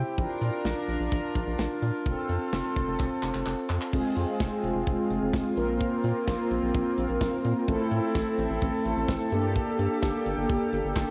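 Mellow synth brass, round and detuned with a touch of vibrato, arrives at 3.9 seconds to carry the accompaniment in this wistful yet upbeat synth-pop excerpt, floating over a shimmering, warbling pulse-width pad that holds sustained chords from the start. A rubbery, hollow square-wave bass bounces beneath, while a polished studio drum kit with punchy kick, bright cymbals and handclaps enters at 0.2 seconds and plays a fill just before the brass comes in. The whole sits in a lush hall reverb with the character of a home cassette recording, and shimmer reverb trails the pad and brass.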